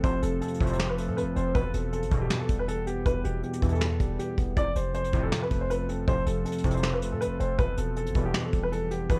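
This trap-flavored hip hop cut, taken from a longer piece, moves in a brooding, dark half-time feel, circling between F and E minor for its full 9.2 seconds. Up front, a dark, mellow baby grand piano carries the melody in a narrow upper range, softened by a low-pass filter and a tape echo, while a clean tine electric piano, heard through a combo amp and also filtered, fills in the accompaniment below. A deep, moody pad with chorus and its own reverb holds sustained chords in the background, and a retro, glossy polysynth adds low stabs built from detuned, wave-folded pulse and sawtooth tones. A boomy, sine-like 808-style bass with a fast attack and decaying tail anchors the low end. A soft brush kit sits up front with a punchy kick, medium-tuned snare, hi-hat and finger snaps in an airy studio sound, and the whole recording carries the worn, warbling pitch drift of old cassette tape in a small room.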